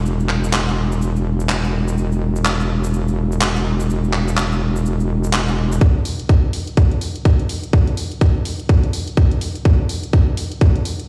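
Aggressive and swaggering, this bass house cut from a longer piece runs at 125 BPM with a 59% swing on the sixteenths, opening on a heavy, saturated wobble bass around E1 that pumps with sidechain compression and chorus, while a garage kit's handclaps, shaker and hats and a very quiet, dark brush kit with a fat snare sit beneath it. At 5.8 seconds the bass and brushes stop and a build-up begins, driven by a tight, tape-warm electronic kick pushed up front until 10.7 seconds, with the garage kit carrying on to 11.1 seconds. The mix has a small-room sheen and the sound of a big sound system playing in a bare stone room.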